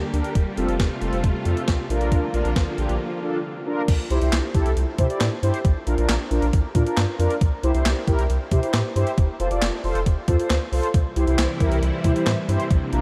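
Synth-pop at 136 BPM in C mixolydian, upbeat yet wistful, where a gated 80s digital drum machine with a thumpy kick and gated reverb snare sits up front over a round, deep analog bass and brassy, detuned synth brass with chorus, while vintage string-machine violas with ensemble chorus hold slow-attack chords until 3.9 seconds, drop out after a break at 3.0 seconds, and return at 10.9 seconds, all bathed in a dreamy, reverb-soaked room.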